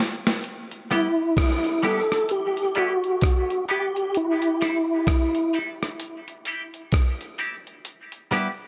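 A short drum fill opens this hypnotic, deep dub reggae piece, cut from a longer performance, and the boom bap sampler-style kit settles in at 65 BPM in 4/4 with a 16th-note swing. The kit sounds gritty and compressed, with a thumpy kick, a medium-tuned snare, rim clicks and hi-hat sitting up front. At 0.9 seconds a mellow tonewheel organ takes the melody in a narrow range around E4 to A4, its round, dark tone colored by chorus vibrato, key click, a fast rotary speaker and dub echo. Alongside it, a semi-hollow electric guitar plays clean, picked accompaniment through analog chorus, a high-pass filter and dub echo, and a filter sweep shapes it through most of the passage. The harmony moves from E minor through A minor and C before returning to E minor, with a break from 4.1 seconds onward. The organ drops out at 5.6 seconds, while a moderate plate reverb gives the mix a deep, spacious tail.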